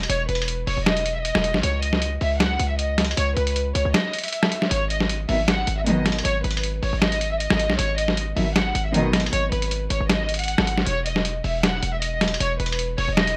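A punchy 808-style bass and a muffled, pitched-down sampler-style kit of hi-hat, rim click and snare open this dark, brooding half-time trap excerpt at 156 BPM in G# minor, joined almost at once by a floating, low-pass-filtered violin section melody, while a distant, woody string section adds bowed stabs from 5.3 to 9.2 seconds over G#m, all in a dry, gritty recording.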